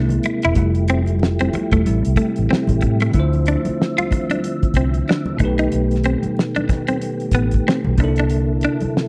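R&B and neo-soul at a late-night, introspective 93 BPM in D minor, this swung fragment of a longer piece opens with a bell-like tine electric piano solo over the first 3.1 seconds, set against a mellow tonewheel organ holding sustained chords through chorus vibrato and a slow rotary speaker, a clean, compressed semi-hollow guitar line bathed in spring reverb, a round, foam-muted vintage bass with transformer saturation, a cloth-damped, thuddy drum kit with a fat snare and tight kick, and soft-handed congas ringing in the background, all captured in a dry, close 1970s-style studio sound.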